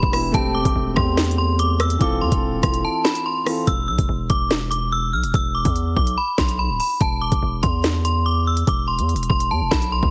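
Heavily compressed, radio-style sound with light digital reverb frames this dark, tense drill excerpt at 144 BPM in a half-time feel: a metallic, inharmonic FM bell carries the high melody through chorus and a low-pass filter, a mellow grand piano accompanies until 3.7 seconds, a distorted, aggressive 808-style bass with a noise layer sits up front, and an electronic drum kit of knocking kick, sharp snare, crisp hats and rim click drives the groove, with the kick dropping out from 2.8 to 3.7 seconds.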